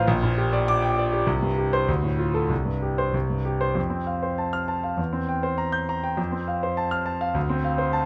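In a flexible, rubato 2/4 pulse hovering between 93 and 103 BPM, this brief cut from a longer classical virtuoso piano study in F major carries an agitated, stormy mood. A clear, natural-sounding concert grand plays solo from start to finish at 8.1 seconds, spanning Bb1 to G6 with a deep bass and an up-front presence. Close, detailed miking sits within a moderate large-studio reverb, while the harmony moves from G minor colours through C and D minor before settling toward F at 3.8 seconds and closing on Dm7.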